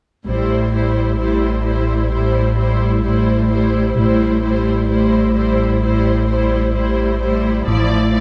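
Eerie and tense, this brief cut from a longer suspense film score moves at a slow 65 BPM in A minor, holding an Am7 chord before shifting to Dmadd9/A at 7.7 seconds. A soft-attack violin section carries an expressive melody between C5 and D5, while an intense, up-front viola section supplies accompaniment. A smooth cello section and a woody double bass section in the background hold A beneath them, joined by a deep, sine-based sub bass drone, all in a dark production with light reverb.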